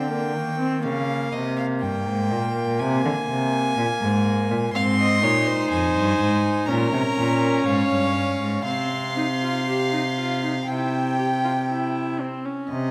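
A close, bowed violin with a rich, reedy gut-string tone carries the melody from the start of this contemplative, solemn baroque-style string quartet fugue at 61 BPM in 4/4, over a period-style viola with light vibrato and an up-front, warm cello bass, while a second violin line enters at 4.7 s and the single players sit in a wet scoring-stage reverb.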